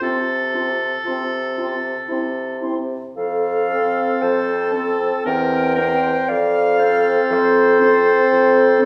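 A warm bassoon with vibrato sits up front in this 8.9-second passage from a tender, slow romantic movement for wind quintet in F major, carrying the bass at 58 BPM in a rubato 3/4. Above it a pure, straight-toned concert flute plays the tongued melody, a bright, present oboe adds a second line, a clear clarinet accompanies in the background, and a distant, roomy French horn accompanies on C4. The quintet sounds in a wet recital-hall reverb, and a second section opens at 3.2 s as the harmony moves between F and C chords.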